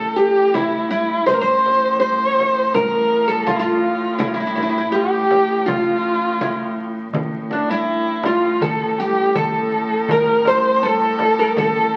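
Heard through the crackle of a very old 78 rpm record and the wet wash of a large studio room, this excerpt from a longer Turkish makam ensemble piece moves at a straight, unhurried 82 BPM in 4/4, set in A makam kurdi with tuning at A4 = 443 Hz, its mood melancholic and full of longing. Up front, a single dark kamancheh carries the melody between D4 and C5, bowed with a soft attack, vibrato and expressive portamento, its top end smooth. An oud traces a second line in the same register, plucked with a plectrum on fretless double strings, bright and woody yet deep. Beneath them, one bowed cello holds a drone on A2, rich and nasal with a biting, airy bow, light vibrato and an earthy, boxy body, while a very quiet pizzicato upright bass with steel strings sits on A1. A close, dry frame drum keeps to the background from 0.5 seconds, and at 7.1 seconds a small, high darbuka with a clay shell and natural skin joins, played with soft hands and carrying a warm tone.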